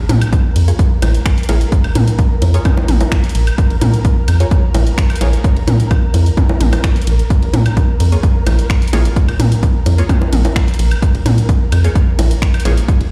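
A dry, big-system sound carries this cool, hypnotic minimal techno excerpt in Bb minor at 129 BPM, where an overdriven, up-front electronic kick and a rubbery, hollow square-wave bass with tube saturation and sidechain pumping anchor a punchy analog drum machine of finger snaps, hi-hat and ride, overdriven electronic toms, bongos and woodblock with dub echo, a muted, detuned dub chord stab with phaser and dub echo that plays from 0.7 to 5.3 seconds and again from 8.1 seconds, and a flickering, grainy granular texture with built-in reverb in the background.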